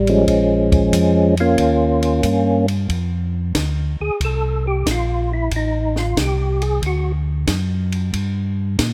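Swinging and bluesy, this soul jazz organ trio fragment, cut from a longer piece, has a fat, percussive tonewheel organ carrying the melody with key click, third harmonic percussion, chorus vibrato and a slow rotary speaker, while a mellow, round, lightly overdriven tonewheel organ holds down the bass line up front. A compact cocktail drum kit, dry and acoustic with dark cymbals, a high-tuned snare and a punchy kick, swings behind them on hi-hat, ride, snare and kick. After an opening section on Bbm7 and Eb9, a tonewheel organ solo takes over at 2.9 s over changes moving from F5 through Am7b5 and D to Gm, and the melody organ drops out at 7.1 s, all in a rough home demo mix with small room ambience.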